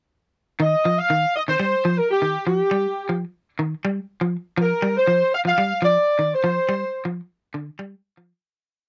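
Driving and intense, this short afrobeat piece moves at 121 BPM in a straight 4/4 groove in C minor. A warm horn section plays a punchy, motif-based melody built from call phrases, shaped with light vibrato and sitting up front from 0.6 to 7.1 seconds. Beneath it, a bright, clean electric guitar picks an arpeggiated ostinato in a low register, also present and close, carrying on until 8.3 seconds. The harmony moves from a rootless C minor to a rootless Dm7 at 4.6 seconds, and the whole piece fades out over its last two seconds. The sound is dry and intimate, like a 1970s studio session touched with light reverb.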